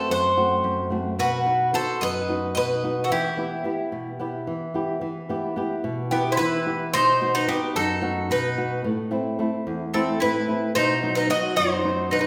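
Moving in a straight-feel 7/8, this moody, cool Greek folk passage, cut from a longer piece, sets an up-front bouzouki melody with metallic double strings, some of them octave-doubled, over a bright, picked bowl-back mandolin second line. A dark, fingerpicked flamenco guitar sits up front as accompaniment, with audible finger squeak, moving through a minor progression that settles on E minor before a new section begins at 5.0 s. The trio plays throughout in a wet, reverberant church or concert hall.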